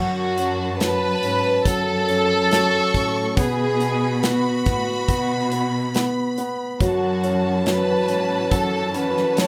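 A heartbroken, melancholic pop ballad at 70 BPM in 4/4, cut from a longer piece, moving from F#m to B5 and on to F#m7. A close, intimate violin section carries the melody with light vibrato and soft sul tasto bowing, while a second, lush violin line floats high above. A concert grand piano with deep bass and long sustain plays the accompaniment, and a dark, distant cello section holds the bass. A punchy, polished acoustic drum kit sits up front from 0.4 seconds, and a very quiet string section with portamento and a smooth top adds sustained chords from 6.8 seconds, all in a moderate studio reverb with a rough demo-like mix.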